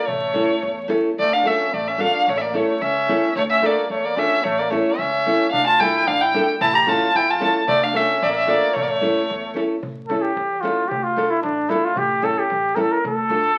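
Crackling like a very old 78 rpm record in a moderately reverberant large studio, this restless, virtuosic Balkan wedding-band excerpt in A phrygian dominant moves at 111 BPM in a straight 2/4. A dark, woody bowed violin carries the melody up front until 9.6 seconds, and a mellow, classical-style trumpet with vibrato plays the second line before taking a solo from 9.8 seconds. A fingerpicked nylon-string guitar comps on the A and Dm chords, a growly pizzicato upright bass sits in the background, and a small, dry clay darbuka sounds briefly at the start and returns at 5.5 seconds.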